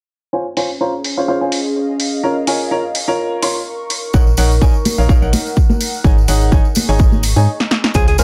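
A clear, woody upright piano carries the riff in this feel-good, euphoric piano house excerpt at 126 BPM in Db major, its short-sustain notes pumping under sidechain and run through a digital delay and a filter sweep from 0.3 seconds, with a warbling, nostalgic sawtooth pad and a punchy analog drum machine's filtered hats and snare underneath, as the harmony moves through Dbmaj7, Ebm7/Bb and Ab7sus4. At 4.1 seconds a hollow, organ-like FM bass and a layered electronic kick arrive up front alongside bright tambourine and soft-handed congas. A stop and drum fill lead to a mellow alto saxophone with scooped notes and a very quiet, gritty hi-hat at 7.9 seconds, all in a light reverb.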